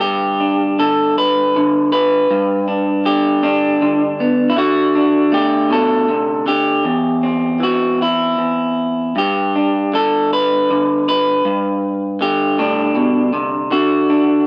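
A bright, twangy electric guitar through a small old amp plays alone for the whole 14.5-second excerpt of this pastoral, hopeful folk piece, its picked lines slightly broken-up, lo-fi and up front in a dry, close 1970s-style studio sound with digital ambience, moving rubato in 6/8 at about 53 BPM in G major (tuned to A4 = 444 Hz) through G, D, C/E, Gadd9 and back to D.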